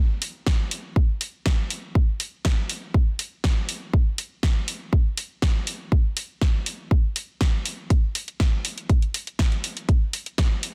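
A punchy, layered electronic kick drum sits up front from 0.5 seconds, driving this short techno excerpt at 121 BPM in a straight 4/4 with a cinematic, dramatic mood. Just ahead of it, a house drum kit arrives at 0.2 seconds with a punchy snare and bright hi-hats, also placed close and forward in the mix. The dry sound carries little reverb, and the dense, heavily limited modern master keeps the drums hard-hitting through its single section.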